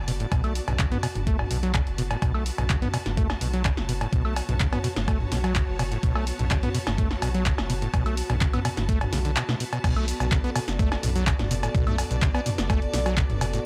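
Acid house at 126 BPM in B minor, gritty and hypnotic, this excerpt opens on a Bm7 chord with a round, deep analog bass, a squelchy resonant saw acid riff with overdrive and tape echo, and a close, biting symphonic string section, all pumping against a thumpy electronic kick and a punchy, up-front analog drum machine of handclaps, hi-hat, shaker, snare, toms, cowbell, woodblock and crash cymbal. At 9.8 seconds the drop arrives and a smooth, mellow analog pad with chorus joins in the background, holding sustained chords. The production is dark and dry, with little reverb.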